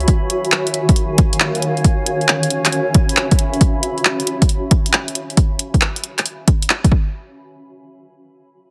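An overdriven, punchy electronic kick sits up front in this moody, soulful slice of two-step UK garage, joined by a gritty analog drum machine whose handclaps and hi-hat carry a swung sixteenth-note feel until about 7 seconds. A blurred, mellow granular cloud pad with its own reverb and sidechain pumping drifts over Ebm11 and Dbm7 before dropping out at 3.6 seconds. The whole cut has light reverb and a heavily compressed, radio-like sound.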